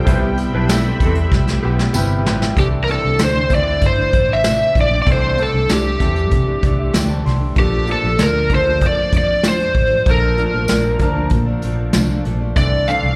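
Indie bedroom pop with a sunny, laid-back feel, this cut from a longer piece is heard as a live club performance through the PA, with a touch of small-room reverb. It opens on a lush, detuned sawtooth pad with chorus and phaser and a slightly broken-up, lo-fi electric guitar through a small old amp, both gone by 2.5 seconds, while a brushed drum kit plays a fill into the next section. At 2.6 seconds an overdriven slide guitar played with fingerpicks takes the melody up front, with chorus, slapback and tape echo, over a dark, round, foam-muted electric bass and the punchy kick and medium-tuned snare of the brush kit. From the start, a fingerpicked nylon-string guitar with finger squeak sits in the background alongside a woody upright piano with cassette-tape colour, which plays a fill around 6.3 seconds, and a jingly background tambourine joins shortly after the opening.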